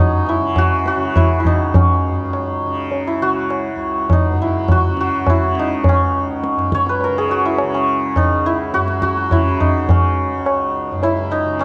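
The sound of worn, warbling old cassette tape colours this Hindustani classical excerpt, with a drifting pitch and light reverb. The mood is longing and meditative, set in a seven-beat cycle with a straight feel, and the pulse gradually speeds up. Up front, a hammered acoustic santur carries the melody, its shimmering, ringing tone moving in the middle register. Beneath it, a bright, softly plucked tanpura holds a low buzzing drone throughout. A low-tuned tabla enters at 0.3 seconds, its ringing strokes caught in a small room.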